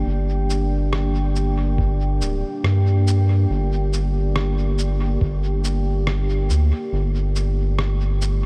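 From the opening, a deep, moody ambient pad holds sustained chords in G minor over a round analog bass that sits up front, setting a spacious, meditative ambient dub groove at 70 BPM in 4/4 with a 60% swing on the sixteenths. The pad is built from detuned unison sawtooth and sine layers with a sub octave, rising slowly and lingering on a long release, shaded with chorus and its own reverb. The bass has a fast attack and a sustained, wave-folded tone. At 0.5 s a muffled, pitched-down electronic shaker and rim click come in at low level, trailing dub echo and carrying a tape-warm, compressed sampler character. A thumpy, muffled kick drum with the same tape-warm, sampler-style character joins at 1.8 s and drops out at 5.4 s, while the harmony moves from G minor to a rootless F at 6.9 s. Light digital ambience surrounds the mix in this brief excerpt cut from a longer piece.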